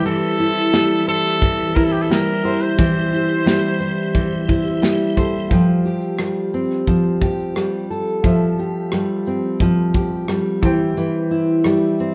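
A clear trumpet with light vibrato plays a pop-style melody over full-bodied fingerpicked steel-string acoustic guitar, a woody upright piano in the background and a piping tonewheel organ holding sustained chords through chorus vibrato and a fast rotary speaker, in this carefree acoustic pop piece at 88 BPM in F major. A modern studio drum kit sits up front with a punchy kick, medium-tuned snare, rim click and shaker in a small, pumping room. The trumpet drops out at 4.8 seconds and the organ at 5.5 seconds as the harmony moves from C/E to Fadd9, while the band, playing live together, rings in a wet stone-room reverb that keeps the easy-going mood relaxed.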